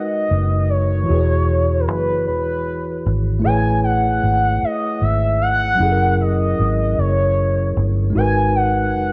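A gliding portamento lead carries the melody in this sultry, yearning R&B fragment, its smooth, detuned blend of sawtooth, sine and triangle tones given a wave-folded edge, a soft attack, vibrato and a chorus shimmer. The lead sits up front, sustaining its notes and sliding between pitches with an unhurried, longing quality. Beneath it, a clean tine electric piano plays the accompaniment, heard through its built-in speakers and also placed close, moving through lush chords from G#m7 to E69, Amaj9 and F#9 before settling back on G#m7. A vintage muted fingered electric bass enters at 0.3 s with a dark, round, foam-muted tone, amped and prominent in the low register. The swaying 6/8 metre and light digital reverb give the short passage an intimate, late-night atmosphere.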